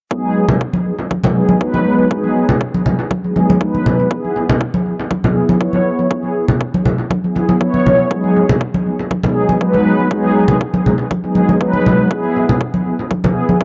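A moderate spring reverb and heavy echo give this afro house excerpt a spacious feel, with a spiritual and earthy mood. At 120 BPM in a straight 4/4 and in G# minor, tuned slightly low to A4 = 439 Hz, it moves between G#m7 and E chords. A mellow synth brass, round and brassy with a detuned sawtooth edge, a filter sweep and vibrato, sits up front with stabs from 0.1 seconds, its chorus, sidechain pumping and analog delay making it breathe and repeat. A punchy, layered electronic kick drum runs underneath, thinned by a high-pass filter. From 0.5 seconds, bright, saturated congas played with soft hands come forward, compressed and carried by their own analog delay.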